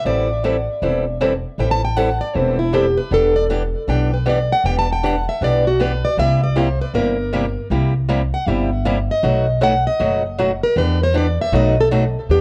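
Acoustic string swing in the jazz manouche style, this fiery, virtuosic fragment of a longer piece features a bright, boxy, parlour-type plugged-in steel-string acoustic guitar with fresh strings, taking a picked solo through tape echo over Am7, Em7, C7 and B7 changes, backed by the warm, picked accompaniment of an old ladder-braced acoustic guitar with old strings and a dark, thumpy, woody pizzicato upright bass on gut strings, the trio sitting up front in a small room and coloured by worn, warbling cassette tape with pitch drift.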